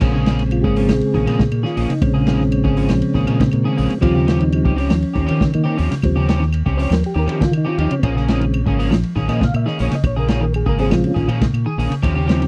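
Afrobeat with a funky, defiant mood, this excerpt from a longer piece is built around a soft, flute-like tonewheel organ solo that runs from start to finish, colored by chorus vibrato and a slow rotary speaker, over a round, up-front fingered bass and a muffled vintage drum kit with dark cymbals and a punchy kick. A slightly broken-up electric guitar plays picked stabs through analog chorus, while a clean electric guitar adds arpeggios from 0.2 seconds and woody claves sit in the background. The harmony moves from Bbm7 to Eb13 and back to Bbm7, captured in a dry, close 1970s-style studio sound.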